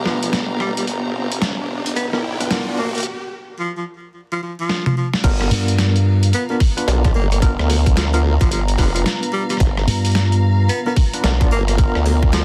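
A sampler-style drum kit, overdriven and pitched down, drives this gritty, playful glitch hop fragment at 110 BPM with a swung feel, its compressed snare and rim clicks sitting in a modest reverb. Beneath it, a formant-sweep wobble bass with a sawtooth edge and tube saturation wobbles up front, while a dark, detuned analog pad and a distant bowed string section fill the background, both pumping against the beat. A close-miked tenor saxophone carries the jazz-inflected melody with light vibrato through delay, and a worn, slightly out-of-tune tine electric piano adds mellow stabs with tremolo as a filter sweeps across it during the build-up. A background riser runs until 3.1 seconds, a break and drum fill follow, and at 5.2 seconds the drop arrives with a tight electronic kick. A bright slap bass with an envelope filter cuts in briefly at 5.5 seconds and again near 9.9 seconds, all over a dense, heavily limited master dusted with vinyl crackle.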